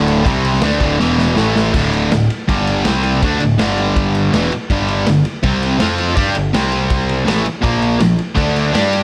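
Swaggering and gritty, this garage rock excerpt in D minor charges along at 163 BPM in a straight 4/4, driven by a cranked, double-tracked stack guitar riff with bright overdrive sitting up front, a growly, overdriven picked electric bass underneath, and a raw acoustic drum kit with a punchy kick, medium-tuned snare and rolled-off top that plays a fill from 1.0 to 1.7 seconds leading into the next section, all in a small room with light reverb as power chords shift through D5, G5, C5 and Bb5 with occasional minor add11 colours.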